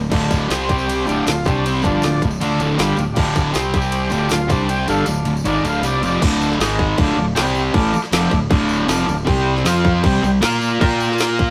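Garage rock with a menacing, swaggering edge, this cut from a longer piece is driven by a double-tracked, up-front fuzz guitar riff over a bright fingered electric bass with tube saturation, a jingly tambourine in the background, and a tight-kicked garage drum kit with a woody snare, crash and ride. A buzzy, vintage combo organ holds sustained chords with light vibrato while a second overdriven organ carries the melody from 0.7 to 6.2 seconds, and the kick and snare drop out from 4.7 seconds before the second section begins at 6.2 seconds. The sound is a rough rehearsal-room recording with moderate studio reverb, moving between D minor chords and power chords.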